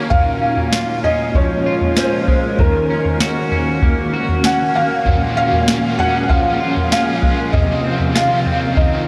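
This ethereal, haunting dream pop excerpt in Bb minor opens on a cloudy, evolving granular pad holding sustained chords, with its own reverb and ensemble chorus, beneath picked arpeggios from an electric guitar at the edge of break-up, twangy and compressed, sitting up front with analog chorus and delay. From 0.1 seconds a felt-muted upright piano carries the melody, soft and intimate with audible action noise, thickened by ensemble chorus and analog delay. A soft vintage rhythm box enters at the same moment in a straight 4/4 at 97 BPM, its deep kick, crisp snare and toms dry and tape-tinged. At 5.0 seconds a double-tracked, overdriven guitar returns with crunchy accompaniment through harmonic tremolo and analog chorus. The harmony moves from Bbm7 to Ebm7 and back before settling on F7sus4/C. The whole mix is soaked in a huge ambient reverb with a 7.3-second decay, giving the piece a blurred, dreamlike haze.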